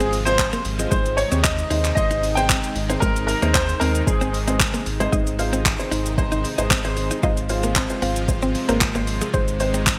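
Euphoric and upbeat, this dance-pop excerpt opens with a clear, polished baby grand piano carrying the melody through chorus and delay until 4.8 seconds, and a soft, round pluck with a mellow, decaying tone takes over the lead at 5.1 seconds. Beneath them, an intimate grand piano with audible action noise plays the accompaniment, while a lush, detuned supersaw pad and a scooped, clean electric guitar riff sit in the background. A deep sine sub bass pumps with the pad, pluck and accompanying piano against an up-front, overdriven deep house kit of kick, handclaps, hi-hat and shaker with gated reverb, all framed by bright 1980s-style digital production.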